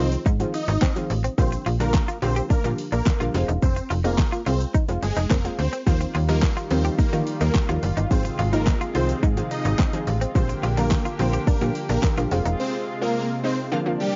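Euphoric and carefree, this dance-pop excerpt moves in a straight 4/4 groove, cut from a longer piece and heard through the soft haze of a home cassette recording with light reverb. A huge, detuned supersaw carries the melody with a phaser and sidechain pumping, while an analog pluck with a round, sawtooth bite and chorus fills in the accompaniment, both riding the same pumping motion. A punchy, layered pop drum kit with a fat snare, handclaps, hi-hat and shaker sits up front beside a snappy, metallic slap-like FM bass, and a very quiet, grainy egg shaker adds a dry, close texture. A twangy, clean electric guitar recorded direct plays a compact riff with subtle chorus, and at 5.9 seconds a lush, evolving unison pad enters with slow-attack sustained chords. The chords cycle through Ab6, Bb6, Fm and Ebadd9, and by 12.6 seconds the drums, bass, shaker and guitar drop out for a short break, leaving the synths and pad to carry the final moments.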